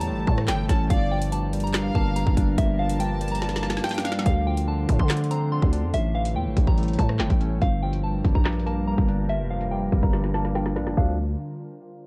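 Menacing and tense, this half-time drill excerpt in D minor at 143 BPM rides an up-front electronic kit with a hard-clipped kick, woody snare, metallic hats, claps, rim clicks and crashes, plus a growling, buzzy 808-style bass, with drum fills at 3.4 and 10.1 seconds and a filter sweep running from 4.3 to 11.0 seconds. A soft, warbling FM synth bell carries the melody over a barky, lightly overdriven tine electric piano and a glassy, ethereal pad holding sustained chords in the background, while a reedy studio violin section with light vibrato and tape echo plays a second line until 4.2 seconds. Chords move through A7, Gm7 and Dm7 in a dark, low-passed production with light reverb.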